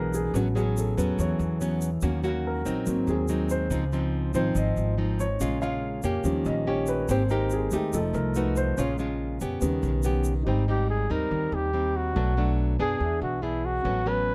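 Breezy and relaxed, this 142 BPM bossa nova in 4/4 pairs a fingerpicked, classical-toned nylon-string guitar with a woody, thumpy pizzicato upright bass beneath an intimate grand piano solo with audible, natural action noise, joined by a grainy, bright tube shaker until 10.5 seconds, before a mellow flugelhorn with soft attack, vibrato and a smooth top steps up front to carry the melody from 10.7 seconds, all heard through close, detailed microphones with little reverb.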